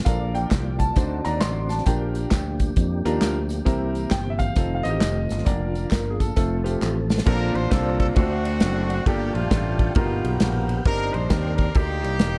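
Swinging eighths at 134 BPM drive this hopeful, soulful uptempo gospel passage in Bb major, where a growly, punchy fingered electric bass and an up-front acoustic drum kit anchor a clear grand piano's long-sustained accompaniment and a tonewheel organ's sustained chords, which sit in the background with slow rotary speaker, chorus vibrato and key click, while a warm, intimate concert grand with audible action noise carries the melody until 6.8 s, tambourine, egg shaker and group handclaps add a live-room touch, and after a drum fill a smooth-topped horn section with light vibrato takes over the melody at 7.3 s.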